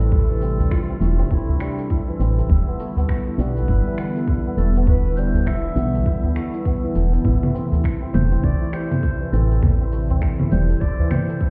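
Organic downtempo with a mystical, hypnotic mood and a swung 4/4 groove, cut from a longer piece. A tight, up-front electronic kick and a layer of overdriven electronic shaker, finger snaps and congas drive the beat, joined by a deep, dry udu played close. A round, woody FM bass with a fast attack pumps against the kick beneath a smooth, detuned sawtooth pad with chorus, whose mellow chords also pump as the harmony moves from Am to Em7 at 2.5 seconds and back to Am at 7.2 seconds. A hammered santur rings out shimmering arpeggios through a digital delay, while a distant, roomy clarinet carries a classical-style solo melody with delay. A very quiet bronze singing bowl adds a bright, metallic, slowly beating tone, and the whole mix sounds muffled, as if heard through a wall in a stone room, with the bass dropping out at 10.7 seconds.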